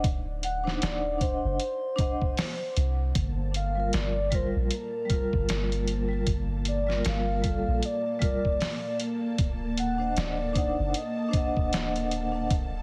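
This dark, hypnotic trip hop excerpt in G minor opens at 0.0 s on a D7b9 chord with a muffled, pitched-down sampler-style drum kit, a deep, round 808-style bass and a mellow vibraphone played with soft mallets, moving at 77 BPM in a swung 4/4. The compressed drums sit up front with a thumpy kick, a medium-tuned snare and hi-hat in a small room ambience, while the soft, sine-toned bass decays beneath them, also up front. The vibraphone rings metallically through tremolo, a low-pass filter and tape echo. At 0.4 s a pure, breathy sine lead takes the melody, gliding and warbling with vibrato, analog chorus and tape echo. At 3.2 s, as the harmony shifts to Gm7 before returning to D7b9, a vintage string machine with cellos adds full-bodied, evolving sustained chords thickened by ensemble chorus. The mix carries a heavily compressed, radio-like digital sheen.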